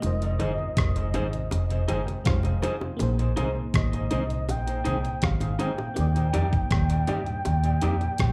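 Tender and smooth, this short cut from a longer lovers rock reggae piece moves in a straight 4/4 over a chord sequence running from Fm7 to Bb9sus4 and settling on Ebmaj7. A reedy, woody FM lead carries the melody with vibrato, moving between Eb5 and G5 and bathed in chorus, tape echo, slapback and plate reverb. The low end is up front: a dark, round, foam-muted fingered electric bass punches alongside a detuned 8-bit drum machine whose thumpy, tape-warm kick, hi-hat and rim click give a sampler-style feel. A glassy, bell-like FM electric piano adds warbling chords with chorus and breaks into a fill from 1.5 to 3.0 seconds, while a slightly broken-up guitar through a small old amp plays compressed, lo-fi stabs through echo and reverb. Underneath, a very quiet flute-like tonewheel organ turns on a slow rotary speaker, and tight, high-tuned bongos tap softly until 7.6 seconds, all heard as a live gig through the venue's PA with light club reverb.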